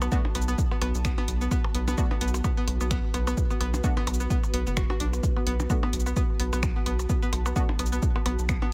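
A punchy analog kick sits up front at 129 BPM in 4/4, with a 56% swing on the sixteenths, while a drum machine adds cabasa, finger snaps and hi-hat, and percussion blips trail tape echo through this short cut from a longer minimal techno piece. The mood is sparse and cool, resting on a single B7(no3) chord with little reverb on the whole. A rubbery, hollow square bass bounces between F#1 and B1 with tube saturation and sidechain pumping, loud and close in the mix. Over it, a twangy, string-like resonator pluck plays a riff from B3 to F#4, bright and decaying, treated with chorus, delay and pumping. A muted, deep dub chord stab, filtered and echoing on tape, sits in the background from 0.1 to 7.6 seconds. An ethereal, airy pad with a slow attack and long release spans B3 to A5, softened by ensemble chorus and its own reverb as it breathes with the sidechain.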